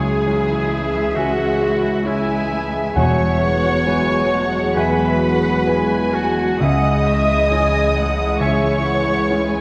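Set in a moderate concert hall with a dark production, this uplifting, hopeful cinematic excerpt flows in a free rubato feel as muted, veiled violin sections carry the melody and a second line over con sordino violas and a close cello section, with a lush, distant double bass section underneath. A warm oboe adds a solo second line, while a concert grand piano with deep bass, a tight French horn section holding sustained chords and a very quiet, ringing harp playing arpeggios fill in behind. An airy, bright flute ensemble and a mellow clarinet join at 1.2 s, and soft-mallet timpani sound briefly at 3.0 s as the harmony moves from C#m to Eadd9 and back.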